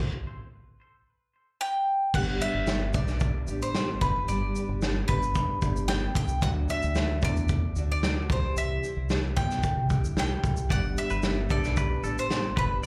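Heard through a venue's PA with a light club reverb, this live acoustic pop cut from a longer piece has a sunny, carefree mood at 112 BPM in a straight 4/4. A loose indie drum kit opens the passage with a punchy kick, medium-tuned snare, shaker and dark crash cymbals, sitting up front with a gritty, saturated tone and a rolled-off top. A bright bowl-back mandolin, its doubled strings picked and placed up front, carries the melody from 1.6 seconds with slapback and tape echo. At 2.1 seconds a full-bodied, double-tracked nylon-string guitar begins fingerpicked accompaniment with slapback echo, joined by a round, deep dub fingered electric bass, as the harmony moves from G to D and C. At 10.7 seconds, as the chords return to G, a compressed, twangy twelve-string electric guitar adds clean picked arpeggios with slapback and tape echo.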